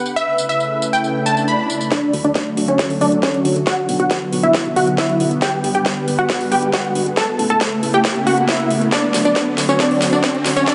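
A punchy, detuned supersaw stab sits up front carrying the melody from the first moment, its sawtooth pluck shaped by a low-pass filter, delay and sidechain pumping in this uplifting, euphoric trance excerpt in D major at 137 BPM. Beneath it a lush unison pad holds thick, bright sustained chords, colored with chorus and phaser and pumping along, moving through Aadd9, D, Bm and G. A big-room dance drum kit with a huge snare, metallic hats and tambourine comes in almost at once, while swells and risers hover in the background from 1.2 seconds. At 1.9 seconds an electronic kick drum arrives as a build-up begins, with a drum fill, a riser and a filter sweep on the supersaw running through to the end. A round, dark FM bass with a fast attack and a decaying tone follows at 2.1 seconds, tucked low in the mix, and a moderate hall reverb gives the whole track a spacious sheen.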